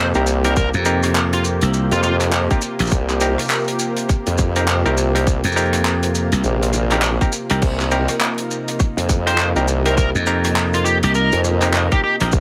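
A sawtooth-and-sine wobble bass with a formant filter sits up front, made gritty by overdrive and chorus, while a punchy, growly slap bass shares the low end in this funky glitch hop excerpt at 102 BPM, swung 16ths, in C minor over a held Cm7. A tight, layered electronic kick and a dry, damped 70s kit of handclaps, hi-hat, rim clicks, shaker and crash share a small room, as a twangy, stringy clav stabs through sidechain pumping and delay and a detuned sawtooth analog pad breathes under chorus and pumping, with a very quiet, ethereal pad shimmering through tremolo and built-in reverb. A dark, overdriven picked lead guitar with delay sings briefly at the start and returns at 9.3 seconds, all over a bed of vinyl crackle.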